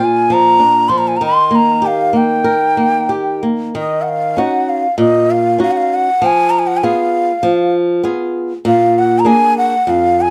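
Longing and passionate, this fado excerpt moves at a rubato 98 BPM in 4/4, shifting from Eb major to Eb minor at 3.7 s as the chords pass through Ebm7, Fdim and Bb7. A breathy bamboo bansuri carries the melody up front, its tongued notes colored with vibrato, while a fingerpicked flamenco guitar with fresh strings provides close, acoustic accompaniment. Both parts play throughout, set in a dark, warm studio production with moderate reverb.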